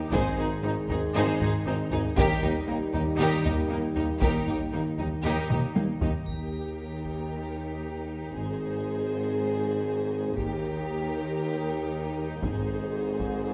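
A close, dry taiko ensemble struck with heavy sticks drives this heroic, majestic cinematic cue, cut from a longer epic orchestral film score in a straight four-four pulse, with a drum fill leading into the second section. Beneath it, a dark French horn section holds sustained chords, joined by mellow trombones until they drop out at 6.0 s. Violins carry the melody, distant and expressive in the background, while a second violin line sounds smooth and even, and warm violas add accompaniment with vibrato and portamento. The bass is built from a clear, vintage-toned tuba with light vibrato, soft-attacked cellos and woody double basses, the strings giving the chords a lush, bowed foundation. The taiko falls away at 7.3 s and returns at 10.4 s, with bright triangle and cymbal swells coloring the second section, and a huge, very quiet reverse cymbal at the very end. A wet recital-hall reverb places the whole orchestra in a resonant church or concert-hall space.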